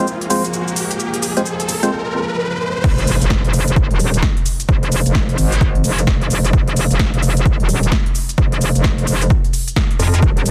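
Bass house at 130 BPM in F minor, aggressive and gritty, with a swung 16th-note feel in a dense, heavily limited modern master. The cut opens on a build-up over an F minor chord: a bright, resonant sawtooth pad with ring modulation holds sustained chords through a chorus and sidechain pumping, while a hollow, organ-like stab carries a filter sweep, cassette tape colour and digital delay, and an electronic riser climbs alongside. A big-room dance drum kit enters at 0.1 seconds with a punchy snare, crisp hats, shaker and crash, its layered sound tape-softened and re-recorded in a large room. The drop lands at 2.8 seconds with an impact that rings until 4.7 seconds, as the chords fall away. Here a metallic, wobbling FM bass takes over up front, saturated and overdriven with chorus and sidechain pumping, ranging from Eb1 to F2. Beneath it an overdriven, punchy electronic kick drives the groove.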